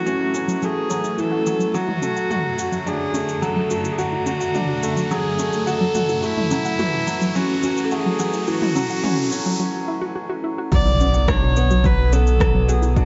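Piano and strings electronica with a melancholic, moving mood, heard as a short cut from a longer piece. A gut-string viola, reedy and smooth on top, carries the melody up front, while a brilliant, woody upright piano plays a riff with audible action noise and long sustain. Underneath sits a cloudy, granular pad holding blurred, evolving chords with built-in reverb and sidechain pumping, and a warbling, lo-fi pluck in the background spins chorused, delayed arpeggios that undergo a filter sweep through the build-up. An overdriven deep house kit of crash, rim click, shaker and toms runs throughout, as an electronic riser climbs toward a break at 9.6 seconds. At the drop at 10.7 seconds, a rumbling, detuned saw bass and a punchy, overdriven electronic kick arrive together with an impact, and the bass pulses with sidechain pumping. The mix sits in a moderate echo-chamber reverb with a soft, rolled-off top, and the harmony moves between F#m7 and D/F# before landing on Bm at the drop.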